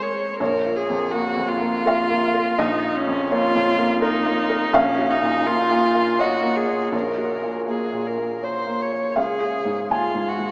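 Heard through a small speaker in a cathedral-like reverb with a long 5.5-second tail, this reflective, fragile neoclassical excerpt in Bb minor moves in a rubato 3/4 at 82 BPM, as an up-front felt-muted upright piano, mellow and boxy with audible action noise and short sustain, and a single rich, focused bowed viola with vibrato share the accompaniment from Bbm through Gb/Bb to Db across its 10.5 seconds.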